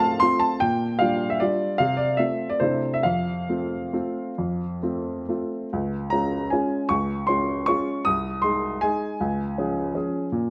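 Swaying in a flexible, rubato three-beat waltz pulse, this graceful and elegant classical excerpt features a solo upright piano with a woody, polished tone sitting up front, captured by close, detailed microphones in a moderate recital hall reverb, and its harmony moves to a new tonal center at 5.7 s.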